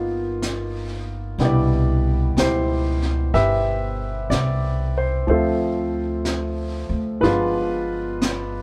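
The rhythm sits in a slow, unhurried 4/4 at 62 BPM, with a gentle swing on the eighth notes that gives this tender, romantic jazz ballad its easy sway. A polished concert grand piano carries the harmony up front, its deep bass and present tone moving from a G7alt through Cmaj7 and Dm7 to a G7b9 in C major. Beneath it, a pizzicato upright bass with gut strings adds a woody, thumpy low end that sits close to the listener. A vintage brush drum kit joins at 0.4 seconds, its high-tuned snare, brushed snare and hi-hat heard from a distance in a small, roomy space with a rolled-off top. Light reverb wraps the trio as a band playing live together in one room, and the passage is cut from a longer piece.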